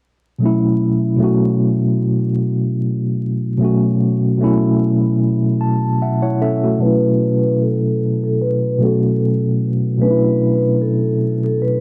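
Vinyl crackle and a light, small-room reverb frame this reflective, melancholic hip hop excerpt with a gently swung feel, where a clean, up-front tine electric piano with medium tremolo, cassette tape colour and a low-pass filter sits on a B9sus4 chord and plays a fill from 5.2 seconds, before a mellow, airy soft-mallet vibraphone with slow motor vibrato carries the melody from 6.8 seconds as a filter sweep runs to the cut at 11.8 seconds.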